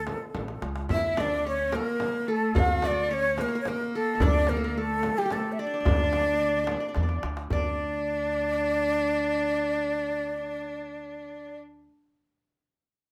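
A moderate small-room reverb frames this short cut from a longer Arabic maqam ensemble piece, festive yet stately, moving at 109 BPM in a straight 3/4 in D maqam suznak. Up front, a breathy, bright ney carries the melody with vibrato and tongued, expressive phrasing, its reed-cane tone given lifted highs. Beneath it, a qanun played with fingerpicks adds a bright-edged second line from its triple strings, and from 0.9 seconds a single bowed cello joins with a biting, intense vibrato that sits at a distance. A pizzicato upright bass on steel strings grounds the harmony with a woody, growly pulse. A clay-shell darbuka with natural skin sits in the background, and a deep, large frame drum sounds from a distance. Both are struck with hard hands and drive the rhythm, with fills near the start and again just before the second section arrives at 7.5 seconds, after which both drums fall away at 7.8 seconds.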